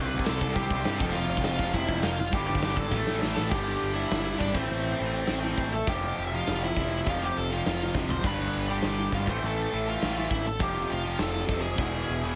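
A bluesy, distorted lead guitar carries the melody with digital delay over two bright, picked rhythm guitars churning out riffs and a growling overdriven bass, while an up-front rock kit with a punchy kick and medium-tuned snare drives this aggressive, raw punk rock at 203 BPM, moving from C5 and F through G5 and A5 before a drum fill at 2.9 seconds drops it into a half-time passage at 3.5 seconds that cycles through Am, F and G and lands on E, all in a light reverb from a longer piece.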